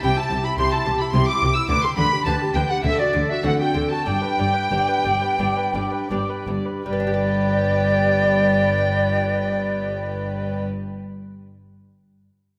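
In a straight 4/4 that slows between 0.6 and 6.9 seconds, this brilliant, festive baroque-style concerto movement with solo episodes is cut from a longer piece. An airy, expressive concert flute with vibrato carries the melody alongside a distant violin section of dark, reedy gut-string tone, while a second violin section adds a smooth-topped line in the background, and a nasal viola section fills in the accompaniment beside a delicate, fingerpicked lute whose double strings ring on until 11.1 seconds. A close cello section and a double bass section, both rich and bowed in period style, anchor the bass, and the sound is bathed in a wet concert hall reverb.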